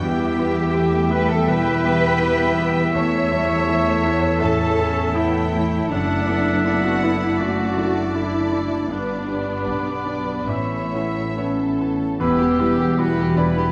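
From the very start of this cut from a longer emotional film score, muted violins with a veiled vibrato sing the melody in free rubato over a softer, distant second violin line, while a bright clarinet, a hollow flute and a mellow cor anglais weave second lines, a clear grand piano and lush, very quiet violas accompany, a dark French horn section holds sustained chords in the background, and cellos with a smooth top join up-front double basses on the bass, all set in a moderate scoring-stage reverb for a moving, hopeful mood.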